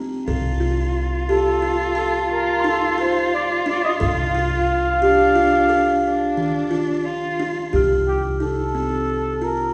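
Contemporary chamber music in an uneven 11/8 meter, this pensive yet urgent passage from a longer piece sets a buzzing, woody kalimba's arpeggios over a growly pizzicato upright bass, with a smooth bowed cello carrying a second line. A breathy, whispered flugelhorn with light vibrato takes the melody from 1.3 s, while a bell-like glockenspiel played with rubber mallets sits softly in the background from 2.6 s. The ensemble is heard from further back in a recital hall with wet reverb, and a new section begins at 7.7 s.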